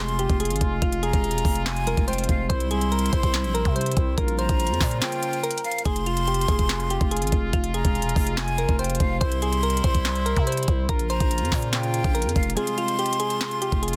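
This hard-hitting, menacing trap cut opens with soft, round electric-piano-like synth keys carrying the melody while a breathy jazz flute sings a second line above. A thumb-plucked concert harp rings in the background and a smooth-topped brass ensemble holds sustained chords beneath them. A growling, buzzy 808-style bass sounds from the very start, and an up-front electronic trap kit arrives a split second later, with its knocking kick, sharp snare, crisp hats and handclaps driving a half-time feel at 143 BPM in F harmonic minor. The mellow keys carry chorus, a filter sweep and tape echo. The flute, bright in its highs and expressive with vibrato, shares the tape echo. The chords cycle through Fm, C and Bbm. A break lands at 5.0 seconds, the harp drops out at 7.4 seconds and returns at 12.6 seconds, just as the kick briefly mutes. The small room ambience and a dense, heavily limited modern master keep this fragment of a longer piece tight and loud, with the bass and drums pressing forward.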